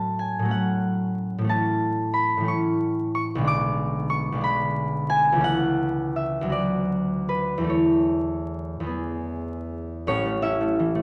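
Classical solo harp piece in A major, dreamy and graceful, moving in a gently flowing 6/8 at roughly 49-62 BPM counted in dotted quarters, with a rubato feel that lets the pulse breathe. The concert harp plays alone across the whole 11-second excerpt, its fingerpicked strings ringing out from a low A1 up to D6 and sitting up front in the sound. Its tone is acoustic and warm, carried by a moderate recital hall reverb that gives each note a soft halo, while a faint vinyl crackle adds an aged texture beneath. The harmony opens on F#m/A before settling onto A at 1.5 seconds, then passes through A/C#, Bm/D, A/E and E before resolving home to A at 10.1 seconds. The passage feels like a fragment lifted from a longer piece, closing its phrase with a gentle cadence.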